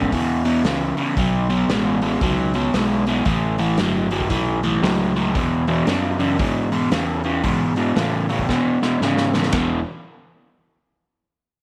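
A crunchy, overdriven electric guitar riff opens this gritty, raunchy blues rock cut at 0.0 seconds, joined at once by a fuzzed, fingered electric bass and a vintage acoustic drum kit, all pulling toward a power-trio, southern rock swagger. The tempo sits at 115 BPM in 4/4 with a swung eighth-note feel, and the riff moves through E5, B5 and A7 before settling on E in E major. The picked guitar is double-tracked and up front, while the bass adds a bright, growly overdriven fuzz beneath it. The drums keep hi-hat, ride, snare and a punchy kick in a pumping small room, with dark cymbals, a medium-tuned snare and a rolled-off top. A drum fill at 8.5 seconds leads into a new section at 9.5 seconds, returning to E5, and the whole mix sits in a moderate echo chamber reverb with small room ambience, cut from a longer piece.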